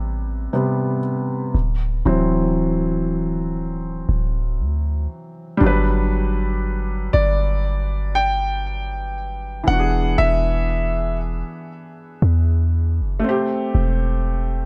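Smooth and dreamy, this slow contemporary R&B excerpt at 59 BPM in G major sways with a light 16th-note swing as a soft, intimate felt-muted upright piano comps over a deep, boomy 808-style bass with a mellow sine tone, moving from Am9 and D9 to Gmaj7, E7 and Am7, while a natural-sounding concert grand piano carries a brief, delay-touched melody from 7.1 to 11.2 seconds, all set in a studio reverb.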